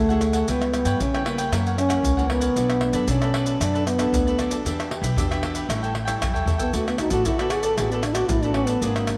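A straight 4/4 samba and choro groove moves along at 115 BPM, driven by maracas, pandeiro, tamborim and a deep surdo played with soft hands, with a short drum fill at 6.2 s. Over it a breathy trombone carries the melody as a mellow, jazz-style solo with light vibrato, sitting clearly in front across the whole 9.2-second clip, which is cut from a longer piece. A crisp, bright cavaquinho picks the accompaniment above, while a small, thumb-plucked nylon-string guitar with audible finger squeak stays in the background. Underneath, a woody, thumpy upright bass with steel strings is played pizzicato. The harmony runs from C#m7b5 and F#7 through Bm7, Em7 and A7 to a D6, and a moderate echo-chamber reverb gives the festive, lively mood a roomy glow.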